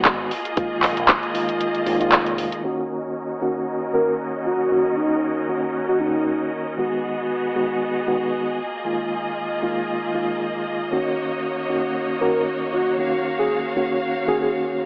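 A reedy electric piano with a fast tremolo and a lush, bright string section holding sustained, sidechain-pumping chords open this sensual, groovy nu-disco cut together, with a fingered electric bass with an envelope filter sitting low in the background. A punchy, layered electronic kick drives the first moments before dropping away, and the bass stops at 2.5 seconds, while the up-front pop drum kit, with its warm hi-hats, handclaps and cabasa, keeps the lightly swung groove going beneath the piano and strings. As the section shifts, the harmony moves from Bb7sus4 onto Ebm7 and Abm7, back through Bb7sus4 and home to Ebm7, while a filter sweep moves across the strings. A soft, round synth lead with a sub octave and chorus sings the melody from 3.9 seconds and returns at 12.2 seconds. The whole track sits in a moderate digital room reverb, with a dry, gritty, telephone-like hardware character.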